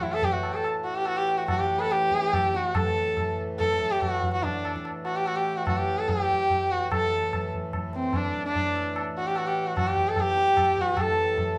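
A rich, nasal sarangi leads this introspective, longing Hindustani piece, its bowed line sitting up front with light vibrato, gliding portamento and the resonance of sympathetic strings. Behind it, a very quiet, warm trumpet in a classical style traces a second line, also touched with light vibrato. A reedy, breathing hand-pumped harmonium holds a low drone, while low-tuned, ringing tabla keeps a 5/4 cycle. All four play together from the start, the performance gradually speeds up, and a new section arrives at 2.8 s. The group sounds as if playing live in one large studio room, wrapped in moderate reverb, and the passage is cut from a longer piece.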